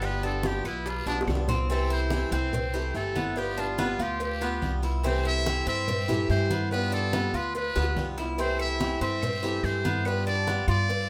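A straight, relaxed Cuban son and guajira groove in 4/4 rides on a thumpy, woody pizzicato upright bass up front, with low-tuned, thick-skinned congas and tight, high-tuned bongos and cowbell set back in the mix, a raspy guiro, and very quiet, dry claves that drop out at 1.5 seconds and return at 8.6 seconds, while a bright, boxy picked swing-style acoustic guitar comps and a metallic, double-strung Cuban tres plays arpeggios beneath a buzzy, thin metal-muted trumpet with light vibrato that takes a jazz-style solo over the first 1.7 seconds before carrying the melody, all under a light reverb in this excerpt cut from a longer piece.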